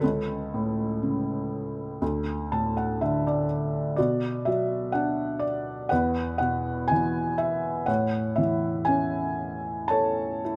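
A felt-muted upright piano opens this short, lyrical classical excerpt on its own, settling into A major at a slow, rubato pace of roughly 55-63 BPM in 4/4. The mood is peaceful and warm, with the instrument sounding soft, mellow and intimate, its thin felt lending a slightly boxy character. Close, detailed microphones place the piano up front, so the audible action noise becomes part of the texture, while a light reverb gives it a little air. Between 2.0 and 4.0 seconds a gentle fill passes through, as the harmony moves from A/C# through D5, Bm and E5 before coming home to A. Spanning C#2 to A5, the solo piece plays out a single gentle section that ends at 10.6 seconds, cut from a longer work.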